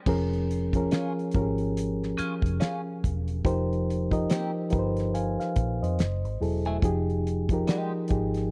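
A reedy electric piano opens this late-night, introspective neo-soul R&B excerpt at a swung 71 BPM, joined at 0.1 seconds by a round, foam-muted fingered bass and a dry, damped 70s drum kit with a fat snare, tight kick and dark cymbals, while a compressed, picked clean electric guitar colored by wah and spring reverb slips in quietly at 0.9 seconds over a Bbm7, Fm11, Gbm9 and Fm9 progression, all captured in a close, dry 1970s-style studio sound.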